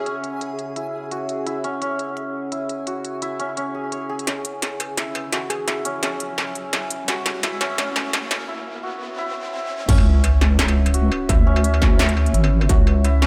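A half-time drum and bass groove at 171 BPM in 4/4, lightly swung on the sixteenths, drives this spacious, heavy C# minor excerpt cut from a longer piece. An up-front industrial drum kit sets the pulse from the start, with a clanging snare, crisp hats, crash cymbal and struck metal, while a moody analog pad holds sustained chords with chorus, phaser and sidechain pumping. A bright, hammered santur ripples through arpeggios under a filter sweep, and a reversed, dreamy swelling texture sits in the background until 4.3 seconds, with brief flickers from a punchy, catchy plucky unison lead carrying phaser and tape echo. A build-up follows, with a drum fill, a filter sweep and a break, as a riser and sub drop enter at 7.1 seconds. At 9.9 seconds the drop lands with an impact, bringing in a deep, detuned wobble bass with chorus and a distorted electronic kick with tape-like warmth.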